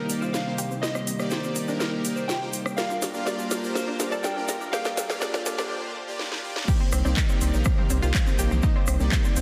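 Progressive house with a driving, dreamy mood, cut from a longer piece. It opens on a build-up where a dark, boxy grand piano in the background carries the melody with tape echo, joined by a very quiet FM synth bell on a second line, over a slow-attack analog pad, a detuned pluck arpeggio under a filter sweep, airy supersaw stabs, a thick saturated sub bass, a house kit with a cracking snare and metallic hats, drum fills and a grainy egg shaker, with most of these parts pumping against the sidechain. After a break at 5.7 seconds, the drop lands at 6.7 seconds with a punchy, overdriven kick up front and electronic bongos, congas and toms, all set in a lush hall reverb within a dense, heavily limited master.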